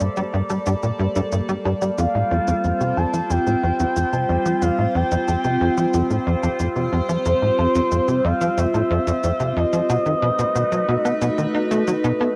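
A punchy, ring-modulated sequencer bass drives this mysterious, hypnotic slice of ambient space music, joined throughout by a morphing, bright wavetable pad with phaser, a smooth, nasal synth lead with chorus, vibrato and tape-worn delay, and dry cabasa and woodblock, all set in a wet booth and captured at home on cassette.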